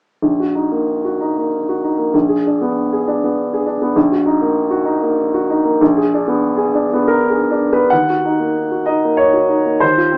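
A small-speaker sound carries this recording, with a moderate reverb from a large studio giving the notes some air. It is a short cut from a romantic classical character piece for solo piano, passionate and stormy in mood, moving in three with a free, rubato feel. The upright piano is woody and up front, playing alone from 0.2 s and spanning from deep in the bass to the upper middle of the keyboard. The harmony swings back and forth between a brooding minor chord over its fifth and a tense dominant seventh with a flattened ninth. At 7.9 s a new section begins, settling onto the plain minor chord before the excerpt ends at 10.2 s.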